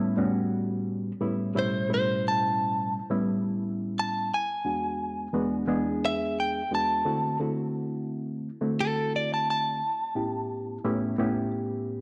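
A clean electric guitar, recorded direct and compressed, sits up front with a picked, soloing melody from the first second over a reedy, worn electric piano whose slightly out-of-tune tone comes through its built-in speakers and a phaser. This laid-back, soulful blues moves at 87 BPM in a straight 4/4 in A mixolydian, with the harmony cycling through A9, E9 and D9 before returning to A9 at 9.8 seconds. A wet echo-chamber reverb surrounds the pair, and the guitar line ends at 11.5 seconds while the piano carries on to the close of this 12-second fragment of a longer piece.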